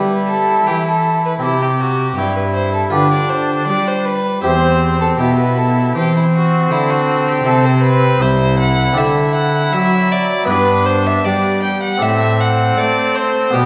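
A distant, roomy oboe sings the melody with vibrato in this solemn, grave baroque-style sonata movement, cut from a longer piece and moving at 79 BPM in a straight 4/4 tuned to A4 = 438 Hz. Up front, a single gut-string violin with light vibrato and a smooth top carries the second line, while a nasal, reedy period cello holds the bass and a round, plucked harpsichord with one set of strings supplies the continuo accompaniment. All four play throughout the 13.7 seconds, and a wet recital hall reverb gives the ensemble a lingering space as the harmony moves from Em/G through C and Am/C to D7, G and a closing D5/A.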